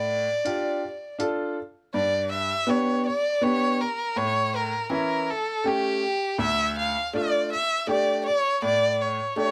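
Klezmer in D harmonic minor at 81 BPM in 3/4, festive yet soulful, where a nasal, up-front bowed violin carries the melody with vibrato and portamento over a bright, woody upright piano whose action noise and long sustain feel intimate, while a muffled, pitched-down electronic hi-hat appears only from 0.5 to 1.4 seconds, all moving through Dm, G, A and D5 in light reverb.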